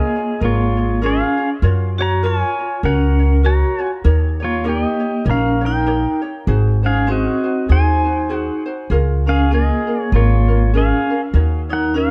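A bright, twangy electric pedal steel guitar carries the melody, its clean, compressed tone played with fingerpicks and slide, shaped by volume swells and trailed by tape echo. This dreamy, relaxed Hawaiian excerpt moves at 99 BPM in 4/4 with a gentle swing on the eighth notes, set in Db major and tuned to A4 = 444 Hz. A vibraphone struck with hard mallets adds a metallic, ringing second line with fast motor vibrato and an airy shimmer. A light, fingerpicked acoustic ukulele keeps a soft accompaniment beneath. From 0.4 s, a woody upright bass with steel strings sits up front, its pizzicato notes dark. The harmony drifts from Db6 through Gbmaj7, Eb7 and Ab7 back to Db6 before reaching Ebm7, all within a warm, dark production with light reverb.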